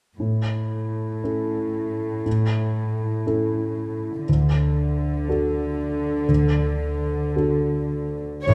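A cinematic excerpt in A major, moving and tender, unfolding in a rubato 6/8 at about 59 dotted-quarter beats per minute. A dark concert grand piano carries the accompaniment from 0.2 s to 8.5 s, its mellow, intimate tone sitting up front with deep bass and audible action noise that lends a vintage character. Alongside it, a studio cello section holds the bass line, bowed sul tasto with light vibrato, soft attacks and a smooth top. The harmony rests on A before moving to D at 4.3 s. At 8.5 s a chamber violin section arrives on a single high note, pure and floating, just as a concert harp sounds a ringing, thumb-plucked low tone. A recital hall reverb with a 1.7-second decay gives the whole ensemble a lingering, wet space.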